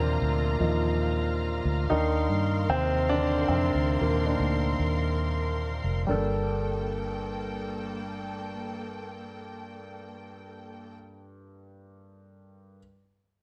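A moderate, large studio reverb gives this piano-driven pop excerpt a roomy sense of space. The mood is driving and bittersweet: a straight 4/4 at 115 BPM in G minor, tuned slightly below standard pitch, with the harmony moving from Ebsus2 to Cm7 and settling on Gmadd9. A polished, up-front grand piano carries the accompaniment and takes a solo through the first 6.1 seconds, continuing until 12.8 seconds. Alongside it, a lush bowed string section holds sustained chords with smooth vibrato and an even, smooth top. A dark, foam-muted vintage electric bass, round and punchy with an amped edge, anchors the low end, and both the strings and bass stop at 10.9 seconds.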